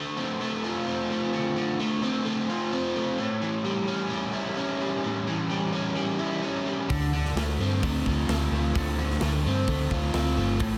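Rock in a shoegaze and dream pop vein, this melancholic, hazy excerpt moves at 129 BPM in a straight 4/4 feel in D minor. A biting overdriven guitar carries the riff from the start, double-tracked and up front, its picked tone coated in lush chorus as the harmony shifts from Dm7 to A7 at 3.2 seconds and back to Dm7. At 6.9 seconds a vintage muted fingered electric bass joins with a dark, round, foam-muted sound, alongside a big acoustic rock drum kit playing hi-hat, a punchy kick and a medium-tuned snare in a big room. The whole dreamy mix is soaked in a moderate, lush hall reverb with a 2.0-second decay. The clip is cut from a longer piece and ends at 10.8 seconds.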